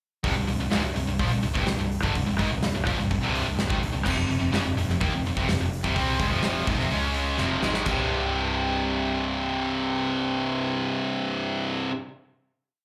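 Hard rock in C minor at 125 BPM, menacing and driving, heard as a live club gig through the PA with light reverb: an up-front high-gain guitar and an overdriven guitar with slapback echo in the background pick a power-chord riff over C5, F5 and Db5, doubled by a dark, round hollow-body bass in eighth notes, while a big, natural acoustic kit with bright cymbals, a medium-tuned snare and a tight kick grooves until a fill at 7.4 seconds, leaving the guitars and bass to hold a final C5 chord from 7.9 seconds to the end.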